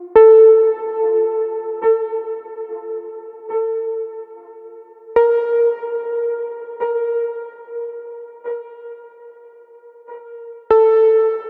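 Ambient in free time, this reflective, serene excerpt features a solo soft, round pluck with a wave-folded, filtered tone, playing alone from 0.0 to 11.5 seconds between F4 and Bb4, up front and treated with chorus and a diffuse ambient delay, all bathed in a huge, wet reverb with a dark production and a tuning of A4 = 443 Hz.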